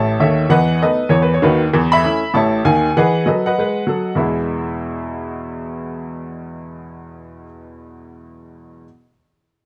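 Swinging and exuberant, this short fragment of stride jazz features a solo upright piano with a clear, woody tone and long sustain, placed up front across its span from 0.0 to 8.9 s. The piece moves in a lilting swing, alternating B7/E and A/E harmonies before resolving to E as a new section begins at 4.2 s. Close, detailed miking and a light touch of reverb keep every note crisp and present.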